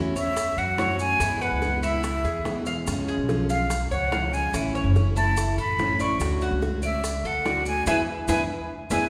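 A straight 4/4 pulse at 144 BPM drives this sunny, relaxed Cuban son and guajira, where a breathy, close-miked concert flute carries the soft-attack melody up front over a growly, woody pizzicato upright bass, mellow tres arpeggios on metallic double strings, a warm picked plugged-in steel-string acoustic guitar with audible finger squeak, grainy maracas and tight, high-tuned bongos set back in the mix, all moving from F#m7 to a band accent on E7 at 7.9 seconds inside the lingering bloom of a recital hall.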